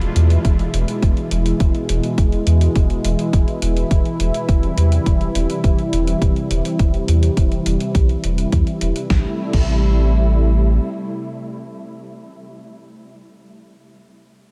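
A detuned sawtooth pad with a smooth, soft attack and chorus opens this cinematic, nocturnal synthwave excerpt, holding sustained chords up front alongside a round, deep analog bass with a nasal, filter-plucked tone and a gated 80s digital drum machine. The drum machine sits further back, its tape-warm, sampler-style crash, hi-hat and gated-reverb snare carrying the sound of a small room, while a punchy, overdriven electronic kick joins at 0.4 seconds and sits up front in a straight 4/4 groove. The harmony moves from E to C/E before settling on Am7 at 9.1 seconds as a brief new section begins. Both drum parts drop out shortly after, the dark bass follows, and the pad rings on alone until 12.2 seconds. A light reverb gives the mix a sense of space.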